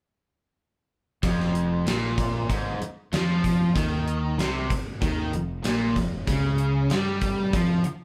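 A wet studio reverb wraps this brooding, swaggering classic rock excerpt, which sounds like a band playing live in one room, with the whole group entering at 1.2 seconds. A dark, crunchy overdriven guitar sits up front with a low picked riff, joined by a brighter overdriven electric guitar playing its own riff, while a growling fingered bass adds its own overdriven edge beneath them. A gated 80s drum kit drives a straight 4/4 feel with a punchy kick, a medium-tuned snare and hi-hat in a bright, airy stone room, as the harmony moves from Fm to Db(#11) at 6.3 seconds.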